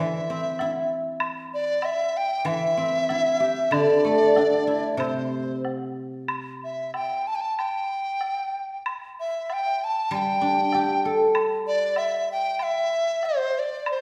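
Heard from further back in a reverberant recital hall, this festive, graceful fragment of Chinese chamber music moves in a free, rubato 4/4, with an airy, hollow large bamboo dizi carrying the tongued, vibrato-laden melody up front over its buzzing membrane, a silvery, ringing guzheng plucked with fingerpicks accompanying until 12.3 seconds, and a dark, close and dry woodblock joining at 0.6 seconds.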